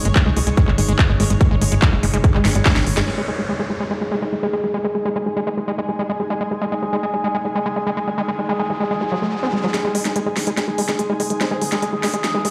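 A squelchy, gritty acid bass sits up front in this driving, intense psychedelic trance excerpt, its distorted, resonant riff running from 0.1 s to the end with tape echo and sidechain pumping. It opens in a drop where a heavy, up-front electronic kick drives alongside a tight, punchy sequencer bass and a techno kit of cracking snare, smooth hats and handclaps, with a drum fill and a band accent closing the passage around 3 s. A nasal, overtone-sweeping drone holds sustained chords throughout with chorus and built-in reverb, while an ethereal pad with tremolo and ensemble chorus drifts mellow in the background. By 3.1 s the kick, sequencer bass and drums have fallen away, filter sweeps move across the acid bass and the drone, and downlifter and riser effects carry the passage, with a riser from 7.6 s, before the drums return at 9.7 s and the sequencer bass at 9.8 s for the build-up. A faint, wobbling formant-sweep bass slips in briefly near the end, and the whole is set in a lush digital hall that sounds like a big system in a bare room.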